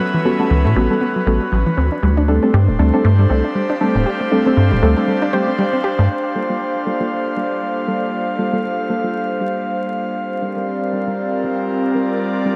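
Swung sixteenths at 118 BPM in 4/4 drive this late-night deep house excerpt in G minor, where a rubbery, hollow square bass sits up front under deep, mellow chord stabs with chorus and tape echo, an airy, breathy pad, and soft, round pluck arpeggios with dub echo that stop at 6.0 s, before a nostalgic, lo-fi tape-like pad with chorus and its own reverb enters at 6.7 s, all set in a wet echo-chamber mix with vinyl crackle.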